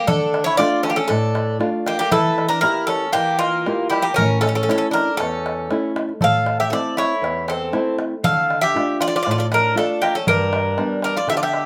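A straight 4/4 pulse at 118 BPM drives this brooding, bittersweet Greek folk excerpt in D harmonic minor, moving through Dm, Edim, A, Am, Dm and G. A bright, metallic bouzouki carries the melody up front, its picked double strings partly octave-doubled. A second bouzouki plays a lower supporting line beneath it. A small, fingerpicked nylon-string guitar sits close by with audible finger squeak, while a high clay-shell darbuka with natural skin plays in the background, all set in moderate studio reverb.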